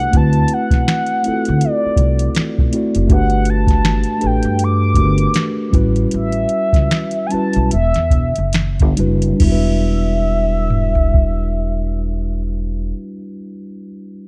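R&B with a neo-soul lean, this introspective, sultry fragment of a longer piece moves in a loose, swung 4/4 and gradually slows between 3.1 and 9.4 seconds. A horn-like synth lead carries the melody in a high register, its round sawtooth tone shaped by a soft attack, sustained notes, vibrato, a filter sweep, chorus and slapback echo. Beneath it, a mellow tine electric piano plays clean, direct accompaniment through rich chords such as D13, Gmaj9, A13 and Em7, and it carries on alone until 14.3 seconds after the other parts stop. An acoustic upright bass sits up front with a woody, dark pizzicato sound, while a dry analog rhythm box supplies a deep kick, crisp snare, metallic hi-hat, finger snaps, toms and crash cymbal. The production is dark and warm with little reverb, keeping the sound close and intimate.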